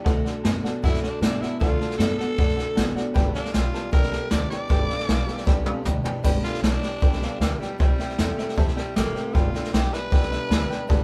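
A straight 4/4 pulse at 155 BPM drives this rowdy, retro rockabilly excerpt in G major, with a brushed jazz drum kit up front and a thumpy, gut-strung upright bass underneath, while a twangy, lo-fi electric guitar riff and a full-bodied picked acoustic guitar sit in the background beneath a worn, slightly detuned upright piano. A raspy, gritty tenor saxophone with vibrato carries the melody from 0.8 s, and after a drum fill it opens into a punchy solo at 6.2 s. The chords move from D to G, then C and back to G, and the band sounds live in one room with moderate reverb.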